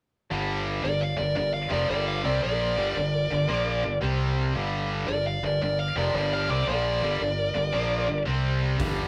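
A dark, smooth overdriven lead guitar stands out, carrying the melody up front over a tight, bright, double-tracked distorted riff guitar and a growling fingered bass in this gritty, heavy blues rock power trio and southern rock excerpt in G minor at 113 BPM with a swung 4/4 feel, while a warm second lead guitar through a small cranked amp sits in the background, the chords move between Gm and C5, and a huge arena drum kit with a punchy kick and hi-hat enters only at 8.8 seconds, all captured as a rough rehearsal-room recording with moderate studio reverb.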